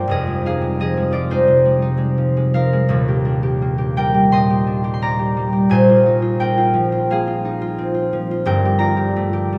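A concert harp opens this classical solo piece, its ringing, fingerpicked strings set up front in a vast, echoing cathedral space whose long reverb hangs for around 5.3 seconds. The mood is mysterious and gentle, moving at about 87 BPM in 4/4 with a free, rubato feel, and the instrument is tuned slightly below standard pitch at A4 = 439 Hz. The harp ranges from a deep Eb1 up to C6, its acoustic tone warm. The harmony drifts through rich extended chords, from Fm7 to Ebmaj9 at 2.9 seconds, then Bb9sus4 and Gm9. Lasting just 9.6 seconds, this brief passage is cut from a longer piece.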